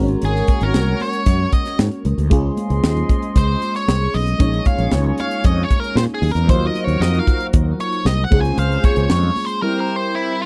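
A dry, close recording with little reverb frames this slick, nocturnal slice of polished 1980s jazz-funk pop at 115 BPM, where a dark, overdriven lead guitar with a parked wah solos over a glassy FM electric piano treated with phaser and analog chorus, its chords moving from Ab9sus4 through Dbmaj7, Bbm7 and Ebm69 before landing on C7. A growly fretless bass and a tight funk kit with a high-tuned snare sit up front, while a mellow, distant horn section with octave doubling and very quiet, high-tuned congas fill in behind. The kit drops out at 9.6 s for a short break, leaving the guitar, piano and horns to ring on to the close of this excerpt from a longer piece.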